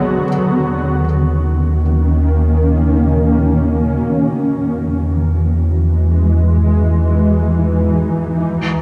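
Serene and gently warm, this ambient fragment drifts in free time, cut from a longer piece and tuned to A4 = 442 Hz. A granular cloud pad sits up front from start to finish, holding sustained chords in a blurred, detuned haze that slowly evolves, its sine-based tone softened by a slow attack, long release, built-in reverb, analog chorus and a shimmer reverb. Beneath it, a deep, round sub bass rests on sine tones from B1 to E2, mellow and steady across the full 8.8 seconds. The harmony moves from D#m7 to Emaj9 at 4.3 seconds, a single unhurried shift that keeps the mood suspended. A moderate plate reverb with a 3.2-second decay soaks the dreamy mix, giving the whole fragment a floating, enveloping space.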